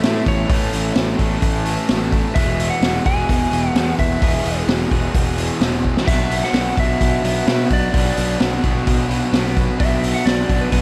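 A straight, swaggering 4/4 groove from a vintage drum kit drives this classic rock excerpt, with a punchy kick, high-tuned snare and dark hi-hat and splash cymbals sitting up front and a drum fill at 5.8 seconds. A fuzzy, picked electric bass and two bright rhythm guitars, one crunchy and one distorted, both riffing in the background with slapback echo, move through A and E to B minor at 6.1 seconds. Over them a compressed, slightly broken-up lead guitar carries the melody with its own slapback, and a lush hall reverb gives the whole mix a big arena sound.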